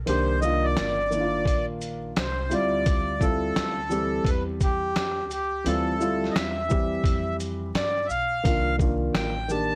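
A woody, pizzicato upright bass on gut strings opens this mellow, cool jazz-hop cut at 0.0 seconds, joined at 0.1 seconds by a reedy accordion melody with slow beating, a dark, intimate baby grand piano with audible action noise, and a gritty, compressed sampler-style kit with a thumpy kick, fat snare, hi-hat and shaker. At 86 BPM with a 66% swing on the sixteenths, the harmony moves from Cm11 to Dm11 at 2.5 seconds and back to Cm11. The gritty hardware sound in a small room, dusted with vinyl crackle and vintage 12-bit sampler grit on the drums, gives this fragment of a longer piece a dusty, gritty character.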